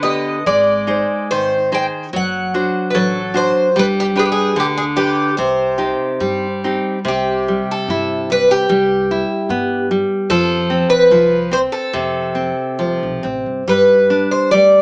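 Through a small-speaker sound with moderate studio reverb, this passionate, mournful fado-style ballad moves with rubato feel as a shimmering, octave-doubled twelve-string guitar carries the melody up front over a full-bodied nylon-string guitar with audible finger squeak and a woody pizzicato upright bass in the background, the harmony turning from minor to major at 7.1 seconds in this cut from a longer piece.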